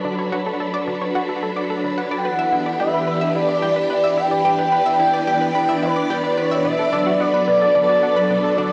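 Expansive and luminous, this short cut of ambient, sequencer-driven space music layers a swirling, up-front phased string machine's sustained chords over a round analog pluck riff with delay and an airy, breathy wind-like tuned noise texture in the background, all colored by cassette tape in a wet, homey room, before a smooth, nasal expressive synth lead with vibrato enters at 2.2 s as the harmony moves from Dmaj7 through Em7 to Bm7.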